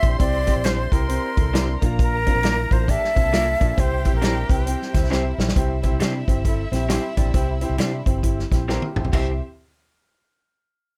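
Joyful and warm, this swung, uptempo 1960s-style soul excerpt at 134 BPM in C mixolydian opens with a breathy, tongued concert flute carrying the melody up front with vibrato and tape echo until 5.4 seconds, over a lush bowed string section on a second line, a boxy grand piano with long sustain, a dark hollow-body jazz guitar riff in the background, a round, foam-muted fingered electric bass, and a punchy, natural country drum kit, while a slightly broken-up, lo-fi electric guitar adds stabs from 0.6 seconds and a drum fill arrives at 5.1 seconds, all in a dry, close sound.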